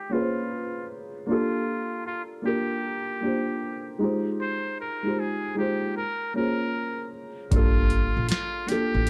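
Melancholic and reflective, this swung lo-fi hip hop excerpt sets a buzzy, breathy metal-muted trumpet melody up front, colored by plate reverb and analog delay, over a soft, boxy felt-muted upright piano beneath a filter sweep, until a woody, growly pizzicato upright bass in the background and a booming analog drum machine with deep kick, crisp snare and metallic hats join at 7.5 seconds, the whole sitting in dark, warm production.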